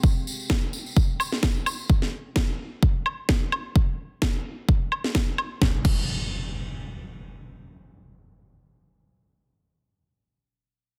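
Bass house with a gritty, swaggering mood and a swung groove, this cut opens on a punchy, up-front electronic kick alongside a jingly, distant tambourine and a deep, moody pad of detuned sawtooth and sub-octave sine that sits in the background with chorus, reverb and sidechain pumping over an Fmadd9 chord. The tambourine and pad drop out at 1.9 seconds, while a house kit of cracking snare, crash cymbal and woodblock, tape-warm and re-recorded in a large room, drives alongside the kick from 0.5 until 6.0 seconds. At 5.6 seconds the harmony drops away and an electronic impact enters the dense, heavily limited mix.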